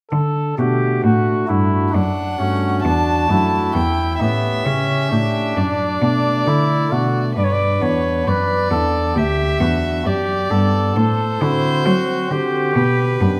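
Serene and dance-like, this baroque-style sonata movement sets a mellow trumpet melody with light vibrato up front over soft organ flute stops with a gentle chiff and a rich, reedy gut-string cello bass in the background, joined at 1.9 s by a close, nasal period-style violin second line, the whole heard in a wet recital-hall reverb.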